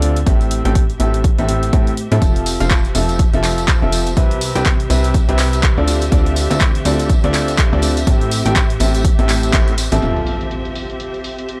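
A swung 4/4 groove at 123 BPM drives this energetic, soulful piano house fragment, cut from a longer piece: a punchy electronic kick sits up front from 0.3 to 9.6 seconds, a tape-tinged analog drum machine adds handclaps and filtered hi-hat, and a vintage, band-limited tambourine joins in the background at 2.2 seconds. A clear, boxy grand piano plays the up-front riff with short sustain, pumping against the kick and trailed by analog delay, while a plucky, funky sawtooth bass with saturation pumps beneath it and a lush bowed string section with vibrato fades in from behind over Am7, Fmaj7, Cmaj7 and Dm7 chords. After a band accent, an electronic impact lands at 10.0 seconds over Fmaj7, all within a dry, gritty cassette-tape sound.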